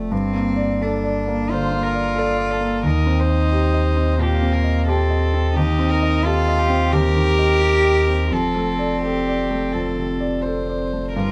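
An intimate grand piano with audible action noise, a close, nasal sul tasto cello and a deep, smooth sine sub bass open this reflective, melancholic neoclassical fragment in G minor at a rubato 88 BPM in 4/4, before a floating, warm violin takes the melody from 1.5 seconds over chords moving from Gmadd9 through Eb6 and Cm/Eb to Dm7/F, all captured as a live group in one room with light reverb.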